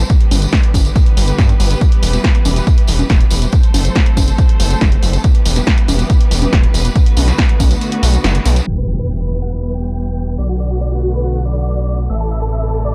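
A straight 4/4 pulse at 140 BPM drives this bittersweet, emotional stretch of uplifting trance in E minor. It is built on an up-front, tape-warm electronic kick, a punchy analog drum machine playing congas, hi-hat and snare, a jingly, close tambourine, and a gritty, nasal driven synth bass pumping with the sidechain beneath veiled, muted strings colored by vintage 12-bit sampler texture and a low-pass filter. The kick drops out at 7.8 seconds before a band accent, and at 8.7 seconds a background electronic impact lands as a huge, euphoric supersaw lead enters with phaser, delay and a filter sweep over the Em, Bm7 and Am changes, all in a dark, dry production with little reverb.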